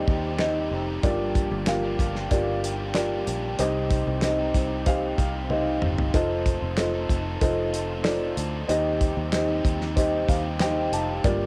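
Opening straight in with a dark, woody upright piano and a fat-snared 70s drum kit up front, this anthemic piano-driven pop excerpt at 94 BPM in 4/4 sets them together with a bright, double-tracked overdriven guitar riff, punchy foam-muted fingered bass, and very quiet lush bowed strings from the very start, over chords moving from Cm/Eb through Gm7, Cm and F7, with cassette tape colouring the piano, guitar and drums in a light-reverb home recording, a drum fill at 5.5 seconds and a piano fill at 10.0 seconds.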